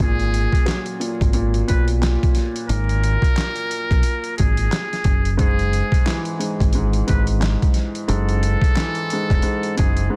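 A dry, densely limited mix with vinyl crackle frames this moody, gritty boom-bap hip-hop excerpt in G# minor at 89 BPM, swung on the 16ths, moving from G#7sus2 to F#m9 at 5.1 seconds. Up front, a pitched-down, sampler-style drum kit brings a thumpy kick, medium-tuned snare, handclaps and hi-hat, while a dark, round fingered electric bass sits low and direct. Behind them, a woody upright piano with cassette-tape colour carries the accompaniment, and a buzzy, breathy trumpet with a metal mute plays a jazz-style solo melody with light vibrato, a soft attack and tape echo.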